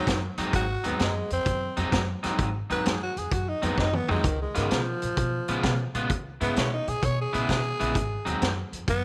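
Gritty and swaggering, this short electric blues shuffle cut from a longer piece features a raspy, growling tenor saxophone soloing up front throughout, over a twangy, slightly broken-up electric guitar riff that drops out at 8.5 seconds. A woody pizzicato upright bass and a vintage acoustic drum kit with a high-tuned snare, tight kick and rolled-off top hold the swung groove, with a drum fill at 3.8 seconds as the chords move from Ab7 to Db7. Light reverb adds a touch of space to the band.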